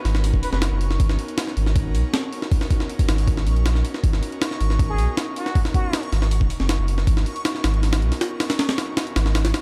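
Drum and bass with a jungle edge, this frenetic, raw excerpt runs at 158 BPM in G# minor over a single G#m11 chord. It pairs a gritty, pitched-up sampler-style kit with a thumpy kick and high-tuned snare up front, a thick saturated sub bass, an airy detuned pad with chorus, and a dreamy reversed granular texture in the background. A plunger-muted trumpet adds brief jazz-style phrases with wah-wah, vibrato and dub echo at 0.4 and 4.9 seconds, all set in studio reverb with a dark, warm production.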